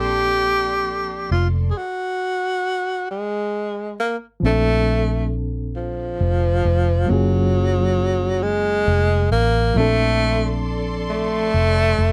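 A dry, close 1970s-style studio sound with light reverb and a faint mains hum frames this tender, sensual slow R&B excerpt in 6/8 at 45 BPM in Bb major, where a breathy, up-front tenor saxophone with subtone, vibrato and slapback echo carries the melody over a reedy, lightly overdriven electric piano with fast tremolo in the background and a round, dark, foam-muted fingered electric bass, while lush bowed strings appear only at the start and return at 9.8 seconds, with a stop from 1.8 to 4.4 seconds before the Bbmaj9 harmony moves to Gbmaj9 and back.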